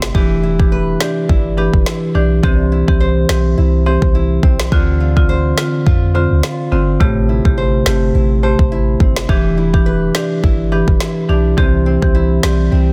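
A swung dancehall groove at 105 BPM in 4/4 drives this hypnotic, tough fragment cut from a longer piece. An electronic afro-pop drum kit sits up front, pairing a deep kick with a woody snare, while a clean 808-style bass anchors the low end with a boomy, sine-like tone that hits with a fast attack and decays into darkness. A marimba played with medium hard mallets carries the accompaniment, its vintage, band-limited sound placed forward in the mix and pumping from sidechain compression. Beneath it, a small, dark nylon-string guitar is fingerpicked in arpeggios, sitting quieter than the other parts. The harmony cycles through Em7, C, Dm7 and Am7 before returning to Em7 and C. The guitar, bass and drums start together, and the marimba joins at 0.1 seconds. The drums and marimba stop at 12.6 seconds, while the guitar and bass ring on to 12.9 seconds. Studio reverb surrounds a dense, heavily limited modern master.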